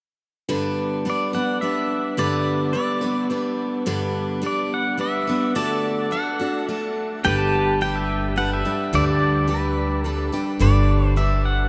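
A bright, full-bodied acoustic guitar opens this sunny, nostalgic honky-tonk excerpt at 0.5 seconds, picking a fresh-stringed accompaniment in a lilting waltz time. Moments later, a clean, compressed pedal steel guitar takes up the melody up front with warm, fingerpicked slide lines and volume swells. The harmony rests on G before shifting to D and coming home to G as a new section begins at 7.2 seconds. Soon after, a second pedal steel adds sustained chords in the background through a lush chorus, while a woody, growly upright bass enters up front with pizzicato notes. The whole recording sits in a vast, echoing space, and the huge ambient reverb gives the classic country sound a dreamy, faraway glow.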